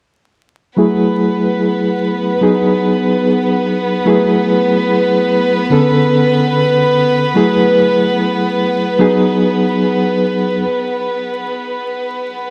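A straight 4/4 trip hop feel underpins this brooding, dark excerpt, where a reedy, up-front electric piano colored by tremolo, a low-pass filter and tape echo plays minor seventh and ninth chords while an intimate chamber violin section holds soft-attack sul tasto chords with light vibrato, a very quiet breathy wind-like texture drifts in at 2.0 s, and vinyl crackle and plate reverb surround the parts until the violins carry the break from 10.6 s to the cut at 12.5 s.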